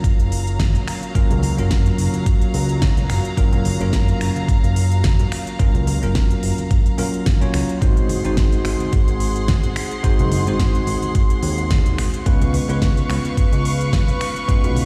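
Sunny and groovy, this swung nu-disco excerpt rides a knocking, tape-warm electronic kick up front, a pop drum kit with a fat snare, crisp hats and finger snaps, and very quiet, low-tuned congas played with soft hands that join at 0.6 seconds. A fat, detuned, saturated analog bass with a filter sweep anchors the groove, while a bell-like tine electric piano, gritty from a vintage 12-bit sampler and trailed by analog delay, pumps against the kick alongside dark, intimate sul tasto strings holding sustained chords. The harmony moves from F#maj7 to G#7 to C#7, and the whole mix sounds as if it is played on a big sound system in a bare stone room.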